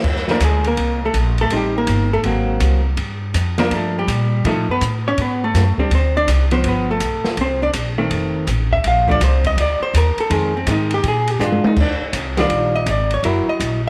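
A moderate echo-chamber reverb gives this short cut of small-group swing and bop a roomy studio sheen, with a woody, thumpy pizzicato upright bass and a clean, compressed hollow-body electric guitar both up front. At a playful 164 BPM in Bb major with a swung 4/4 feel, the picked guitar accompanies from 0.3 seconds through changes such as Bbmaj7, Am7b5 and Ab9. Meanwhile, an acoustic drum kit with dark cymbals, a medium-tuned snare and a boomy kick keeps time, and its fill at 11.4 seconds leads into a fresh pass of the tune on Ebmaj9.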